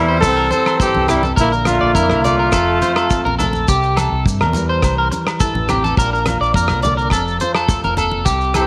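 A close-miked trumpet with light vibrato carries the jazz-style melody up front in this carefree, sunny highlife guitar band clip, shadowed in the background by a raspy, gritty tenor saxophone; both horns drop out at 3.4 seconds and return only briefly at the very end. A twangy, slightly broken-up electric guitar with analog chorus and slapback echo plays arpeggios up front over a full-bodied, thumb-plucked nylon-string guitar and a round, punchy dub bass, cycling through C, Bb and F. A dry, dark 70s drum kit with a tight kick and rim clicks comes in at 0.2 seconds, along with ringing agogo bells and grainy maracas, and hard-handed, low-tuned congas follow at 0.5 seconds in a small, lightly reverberant room.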